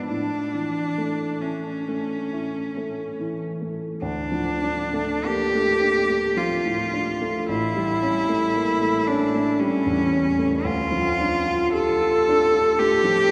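Yearning and solemn, this excerpt from a longer romantic classical piece for cello and grand piano unfolds slowly in 3/4 at 44 to 60 BPM, with a free, rubato feel in D minor. A single bowed cello carries the melody from start to finish, its tone rich, smooth and even, with vibrato, sitting close and up front. A dark, mellow baby grand piano accompanies beneath it across the full 13.3 seconds, its natural tone and short sustain reaching down into the low bass. The harmony moves from A to D minor at 4.0 seconds, then to A7 and back to D minor. Both instruments are bathed in a deep cathedral reverb with a 5.2-second decay, giving the duo a spacious, reverent air.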